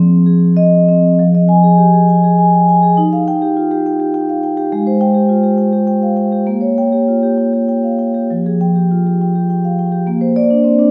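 A solo vibraphone struck with soft mallets, motor off, opens this reflective, flowing contemporary classical fragment, cut from a longer piece, in F dorian at 68 dotted-quarter beats per minute in a rubato 6/8 with uneven beats, its mellow, ringing metallic tone sitting mid-forward and up front as it moves from Fm7 through Ebadd9, Abmaj7 and Bbm6 to Bbadd9, while a wet recital-hall reverb places the listener further back in the room.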